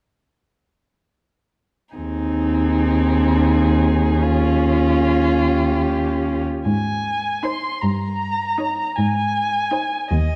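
Dark, veiled sound on a moderate scoring stage reverb opens this short excerpt, a slow romantic movement for muted string quartet in Ab major and 6/8, with a serene mood and rubato around 44-56 BPM in dotted quarters. From 2.0 s a distant first violin carries the melody with vibrato over a close second violin line and a soft-attack viola accompaniment, while the up-front cello holds the bass, all con sordino. The harmony moves from Ab/Eb through Eb9 into a second section at 6.7 s that passes through Eb7/G and settles back on Ab.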